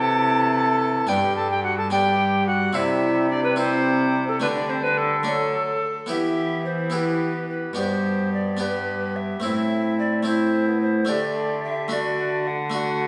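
Festive yet stately, this renaissance-style consort dance in 6/8 is cut from a longer piece. A mellow, hollow tenor recorder carries the melody with a tongued chiff and close-miked presence, while a second tenor recorder, pure and soft in attack, sits up front on a higher line. A bright, plucked harpsichord with an Italian-style single set of strings fills in the accompaniment alongside a bassoon heard in the background, its tone punchy and vintage with light vibrato. Underneath, a bowed gut-string cello supplies a nasal, reedy bass in period style. The ensemble plays together throughout in a wet recital hall, and the harmony shifts to an E minor chord at 6.1 seconds as the dance moves into its second strain.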